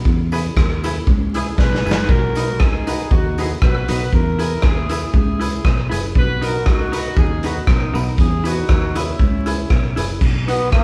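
A gritty, punchy garage drum kit sits up front in this joyful, upbeat ska clip, joined by a round, foam-muted fingered electric bass, a clean hollow-body jazz guitar, a jingly, very quiet tambourine, and a loose horn section carrying the melody from 1.3 seconds, before a breathy trombone steps forward at 10.5 seconds, all in a live-room sound with wet reverb and vinyl crackle.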